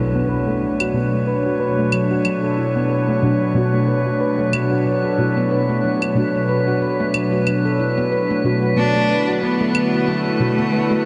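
A reverb-soaked, dreamy mix carries this hypnotic, earthy organic downtempo excerpt in B minor at 92 BPM with a light swing, where ringing handpan arpeggios under a filter sweep and diffuse delay float over a breathy chorused pad, a deep warbling chord stab and drifting glassy harmonics, while a brief background impact opens, overdriven electronic claves enter at 0.8 seconds, and a rich, vibrato-laden bowed cello melody comes in up front at 8.8 seconds over a Bm7 chord.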